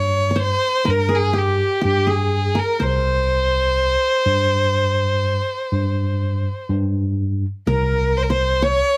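Warm and stately, this excerpt from a longer Arabic maqam ensemble piece moves at 124 BPM, counted in eighths, in a straight 10/8 within C maqam hijaz. A single bowed violin carries the melody up front, its tone rich and focused with vibrato. Alongside it, a qanun plucked with fingerpicks plays a second line, its triple strings giving a warm, acoustic, bright-edged sound. A clean tine electric piano, heard through its built-in speakers, holds the bass up front and stops at 8.8 seconds, just before the violin and qanun finish at 9.0 seconds. Close, detailed miking and very little reverb keep the ensemble near and intimate.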